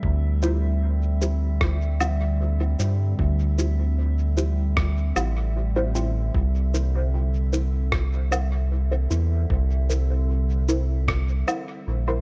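A dry, close mix brings the round analog bass up front, its deep, detuned tone mellow and evolving beneath a hazy, meditative ambient dub groove in a straight 4/4. A warbling, lo-fi pad sits softly behind it, holding nostalgic sustained chords with slow attacks and long releases, colored by chorus, phaser and its own built-in reverb. From 0.4 seconds, a muted, dark, filtered dub chord stab adds plucky, short-decaying hits that pass through phaser, lush chorus, cassette tape grit and dub echo. A muffled, thumpy, pitched-down electronic kick drum is joined by compressed sampler-style cabasa, rim click and woodblock, both in a small room reverb, with dub echo trailing the lighter percussion. The harmony rests on Dm11 before moving to C7 at 6.3 seconds, and the kick drops out at 11.2 seconds in this short cut from a longer piece.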